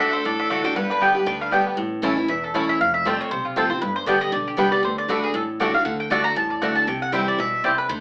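Swung eighths drive this joyful, virtuosic bluegrass excerpt at 236 BPM in G major, where an up-front woody mandolin carries the melody alongside a second mandolin's stabs, a twangy, percussive fingerpicked banjo adds melody from the background, a clear, earthy bowed fiddle with light vibrato offers a distant second line that stops at 1.7 s, a picked steel-string acoustic guitar with an auditorium tone accompanies up front, and a warm pizzicato upright bass sits in the background, all captured as a band playing live in one room with wet studio reverb and an AM radio sound.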